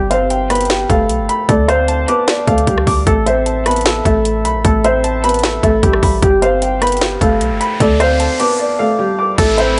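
A soft, felt-muted upright piano carries the eerie melody up front, its action noise audible through a low-pass filter and tape echo. A dark, boxy baby grand adds filtered accompaniment higher up over chords moving through G7, Dm and Asus2, while a hard-hitting trap hip hop groove at 152 BPM in half-time pairs a deep, boomy 808-style sine bass with an electronic kit of hard-clipped kick, sharp snare, metallic hats, rim clicks and crash. An electronic riser and downlifter enters at 7.1 seconds, a break arrives at 8.6 seconds, and a lush bowed string section with vibrato appears at 9.4 seconds just before the excerpt cuts off.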